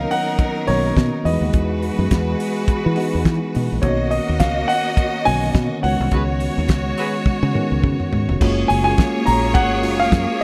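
Piano melody, clear bowed strings with tape echo, mellow tine electric piano, distant French horns, punchy foam-muted fingered bass and a damped, dry 70s drum kit with a fat snare open this glamorous, danceable disco cut at 105 BPM in F# major, lightly swung, with pop-style horn stabs at 6.1 seconds, a drum fill at 7.3 seconds and a move to F#maj9 at 8.4 seconds, all in a small room.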